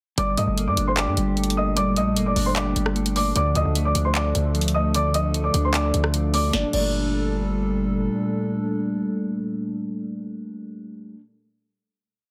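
A half-time trap beat with a sharp snare, bright hats and fast hi-hat rolls drives this short, melancholic, hard-hitting hip hop piece, where a punchy 808-style bass with long sliding sub notes sits up front beneath a dark, boxy grand piano loop doubled in octaves and touched with tape echo, a clean, compressed electric guitar arpeggio rising in eighths through a phaser, and a hollow, flute-like pad under chorus, until the drums stop at 6.8 seconds and the guitar and pad sustain the final chord, the guitar ringing on to 11.2 seconds.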